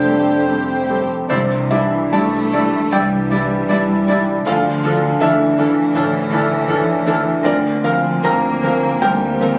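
Captured on a phone in a reverberant, compressed room, this tender, uplifting cinematic film-score excerpt flows in a rubato 4/4. A soft, felt-muted upright piano sits up front with audible action noise, while a bowed violin section carries the melody in the background. Around it, an airy flute ensemble, a second, very quiet violin section and a distant clarinet trace second lines; a viola section with expressive portamento adds accompaniment and a tight French horn section holds sustained chords; and lush cellos and smooth double basses anchor the low end through chords of Fadd9, Cadd9, Dmadd9 and Bbadd9/D.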